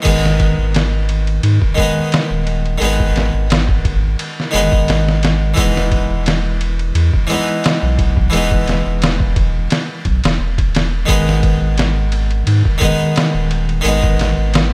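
A trip hop groove at 87 BPM in 4/4 sets a lightly swung sixteenth-note feel, carried by a sampler-style drum kit that sounds compressed, pitched down and gritty, with a thumpy kick, a medium-tuned snare, ride and crash cymbals, and a tape-warmed studio ambience. Brooding and melancholic in G# minor, this cut from a longer piece moves from G#m to Emaj7 at 5.6 seconds and back to G#m at 11.1 seconds. A harpsichord sounds first at 0.0 seconds, playing plucked accompaniment in a bright Flemish-style voice with octave strings, colored by harmonic tremolo and tape echo. Beneath it, a deep, warm, round sine sub bass with a fast attack and sustained notes anchors the low end. The drums, bass and harpsichord all sit up front, wrapped in a digital ambience.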